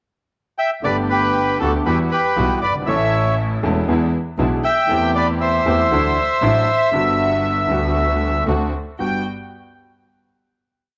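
Passionate and nostalgic, this short tango in G major moves at 118 BPM in 4/4 with a rubato feel. During the pickup bar, the bandoneon enters at 0.6 s with a reedy, vintage, up-front melody built from period-style motifs, partly doubled in thirds and touched by slapback echo. From 0.8 s a violin section in unison adds a gut-string second line with light vibrato, while a warm concert grand piano with deep bass, a clear bowed double bass and a dark, veiled con sordino string section in the background carry the uneven three-and-two eighth-note tango rhythm, all set in moderate spring reverb before the piece settles on a final Gmaj7 chord at 9.0 s.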